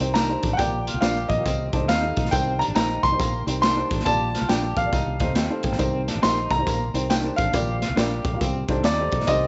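Moderate spring reverb and a capped high end frame this urgent, driving excerpt of swung, uptempo 1960s-style soul. Up front, a saturated garage drum kit with a boomy kick and a pumping room sits under a brilliant grand piano melody trailed by tape echo. Punchy fingered bass, a woody, boxy upright piano that slips in a fill at 5.1 s, and two lo-fi, slightly broken-up guitars through a small old amp (one playing a fingered tremolo riff, the other picked stabs in the background) complete the middle, while a distant, jingly tambourine rides behind as the chords cycle through Cm7, Gm7/Bb and Am7b5/C.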